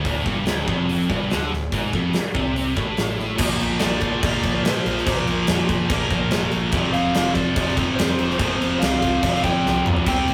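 A double-tracked, scooped high-gain guitar riff opens this aggressive, driving hard rock excerpt over a punchy, airy big-room drum kit with bright cymbals and a round, foam-muted bass sitting in the background, before a dark, lo-fi overdriven lead guitar enters at 3.8 seconds and a drum fill arrives at 9.6 seconds, the whole captured as a rough rehearsal-room recording with tube saturation and wet small-room reverb.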